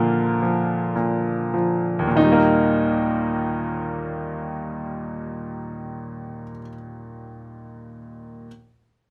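A bright, brilliant, intimate baby grand piano sits up front with light reverb, its long sustain and audible action noise giving the short fragment, cut from a longer piece, a close, personal feel. This peaceful, calm classical solo moves in a rubato 6/8 at roughly 31-41 BPM in Eb major, slowing over the opening 2.2 seconds on a Bb chord before settling onto Eb. The lyrical playing stays between Eb2 and Eb4, and the piano is heard alone until it ends at 8.5 seconds.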